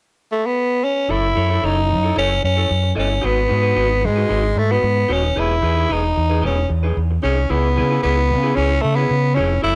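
A straight 4/4 disco groove, sultry and danceable, opens at 0.3 s with a raspy, growling tenor saxophone playing an up-front, jazz-style solo line with scooped notes, light vibrato and a smooth top; at 1.1 s an amped, overdriven fingered electric bass enters up front alongside a bright, twangy, slightly broken-up picked guitar through a small old amp that sits further back in the mix, set in a small room with light reverb, in this fragment of a longer piece that moves through F#m7, G#m7, Emaj7 and C#m7.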